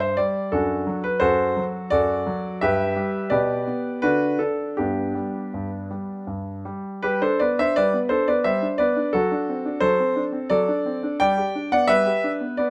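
A graceful, elegant classical-period piano sonatina in G major, moving in 3/4 at a flexible, rubato pace of roughly 79-88 BPM. A solo grand piano, present and polished, sits up front in a light reverb, its range spanning F#2 to G5 and its phrases settling repeatedly from D7/F# onto G. This short excerpt, cut from a longer piece, shifts into a second section at 7.0 seconds before closing on G at 11.2 seconds.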